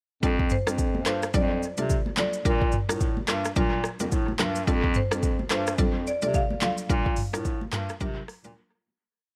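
A sunny, joyful afrobeats piece at 108 BPM in F major opens at 0.2 seconds with a tape-warm electronic drum kit up front, its deep kick, metallic hats, syncopated rim clicks, shaker, handclaps and toms carrying dub echo, alongside a clear, soft-attack bass clarinet playing a bouncy syncopated line with slides and a woody, bright FM synth pluck with chorus laying down syncopated chords over F69 and Bb6, before a boxy padauk-bar marimba enters at 0.5 seconds with a motif-based melody of call phrases, high-tuned congas join in the background at 0.9 seconds, and the echo-heavy mix fades out from 6.9 seconds into a brief break.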